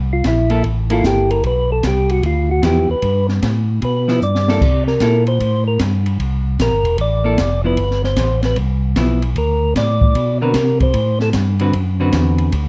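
Swinging in 4/4 at 151 BPM, this bluesy, greasy soul jazz organ trio in G mixolydian sets a fat, lightly overdriven tonewheel organ bass with chorus vibrato, key click and slow rotary speaker beneath a round, mellow percussive tonewheel organ melody through its own slow rotary, while a clean, picked hollow-body electric jazz guitar accompanies and an acoustic small-room drum kit with dusky cymbals, a high-tuned snare and a boomy kick adds a fill at 4.2 seconds, all in a dry, dark production.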